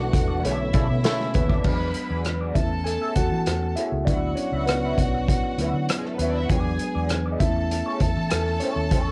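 A silky, cinematic slice of lush 1970s-style soul opens with a fat, percussive tonewheel organ on slow rotary speaker, a worn, slightly out-of-tune tine electric piano, a distant bowed violin section, a wah-and-chorus guitar riff through a small old amp, a round foam-muted bass and a punchy vintage drum kit in a pumping small room, with a brief burst of punchy horn stabs before the electric piano takes a solo from 1.7 seconds over cassette-tape grit and light reverb.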